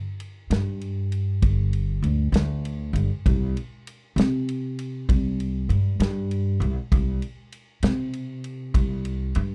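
Slow blues in 12/8 at 66 BPM, this short excerpt carries a soulful, mournful mood with a straight feel. A natural country drum kit enters at 0.2 seconds, its punchy kick, medium-tuned snare and ride cymbal sitting up front with the acoustic character of a small room. An upright bass joins at 0.5 seconds, plucked pizzicato on gut strings, giving a woody, thumpy tone as it moves between G1 and C3. Both parts sit close and present in the mix, and the piece is tuned to A4 = 439 Hz. The sound is a dry, close 1970s-style studio recording with little reverb, and the fragment is cut from a longer piece.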